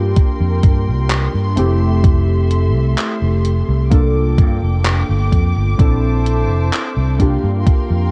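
A dark, cassette-tape sound with little room reverb frames this short vaporwave excerpt, cut from a longer piece, at a slow 64 BPM in straight 4/4 with a dreamy, woozy mood. Warbling lo-fi synth keys carry the accompaniment between A3 and A4, their detuned square, sawtooth and triangle tones softened by subtle chorus, tape echo and a noise layer, with a fast attack that decays into a mellow, nostalgic glow. Beneath them, a dark chamber string section holds bowed chords from Bb3 to D6, sul tasto with light vibrato and a soft attack, sitting intimate and close but low in the mix. Up front, a round, punchy fingered electric bass moves between F1 and G2, joined from 0.2 s by a thumpy, overdriven electronic kick and a gated 80s digital drum machine supplying handclaps and hi-hat, both re-recorded in a small room. The harmony drifts through C7sus4, Fmaj7, Gm7 and Bbmaj9#11 before returning to C7sus4 at 7.2 s.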